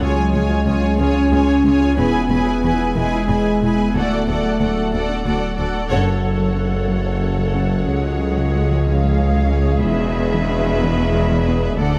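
A straight 6/8 lilt carries this vast, futuristic cinematic passage, cut from a longer piece, where a tight, nasal sawtooth synth runs very quiet arpeggios over a deep, round sine sub bass, a background double bass section and close, lush cellos. Clear bowed violins hold a second line above smooth viola accompaniment, while an ethereal, airy pad with ensemble chorus and built-in reverb and a mellow French horn section sustain chords, the horns dropping out at 5.5 s. At 5.9 s a band accent marks a new section as a distant violin section takes up the melody and a soft-attack, roomy tuba joins the bass, within a moderate scoring-stage reverb.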